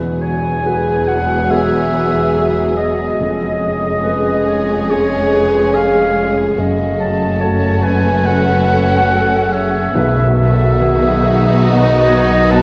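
A rubato 4/4 pulse at 71 BPM carries this tender, uplifting cinematic passage in E major, where a lush, smooth violin section sings the melody over a focused second violin line and a mellow background clarinet, while an airy silver flute and a distant oboe join at 0.2 s. A soft felt-muted upright piano and expressive violas fill the accompaniment, a dark French horn section holds quiet chords, a ringing fingerpicked harp spins arpeggios, and background cellos with portamento and a rich double bass section anchor the bass. Close, dry timpani arrive at 10.0 s, the whole sitting in a wet church reverb and worn, warbling cassette tape pitch drift.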